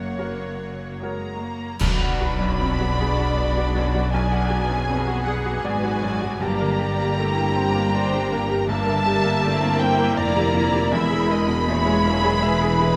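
Sorrowful and longing, this cinematic film-score excerpt moves in a rubato triple metre, with muted violins carrying a veiled, vibrato-laden melody over a second violin line, soft-attack violas and dark, close cellos. A bright, polished grand piano with short sustain provides accompaniment and a very quiet, thumb-plucked harp adds arpeggios, while lush muted double basses anchor the bass. Clash cymbals and concert bass drum, the cymbals dark, play from 1.8 to 3.3 seconds as the harmony turns, all heard through close, detailed microphones on a moderately reverberant scoring stage.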